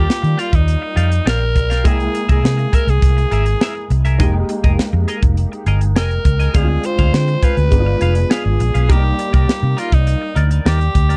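A straight 4/4 groove at 102 BPM drives this polished 1980s jazz-funk pop excerpt, with a crisp fusion drum kit entering at 0.1 s on hi-hat, tight kick and high-tuned snare, sitting up front beside a dark, foam-muted fingered electric bass that sounds round and punchy. The mood is urban and upbeat, moving through rich jazz harmony from Ebmaj9 and C7b13 to Fm11, Dm7b5 and G7b9 before landing on Cm9. A raspy, gritty alto saxophone carries the melody between Eb4 and C5, its pop-style solo voice edgy and present with vibrato and a touch of tape echo. Alongside it, a grand piano adds intimate, boxy accompaniment with audible action noise, long sustain and an ensemble chorus. A bright, twangy electric guitar plays a compressed, picked riff colored by analog chorus. The dry, close studio sound keeps every part immediate across the 11.2 seconds.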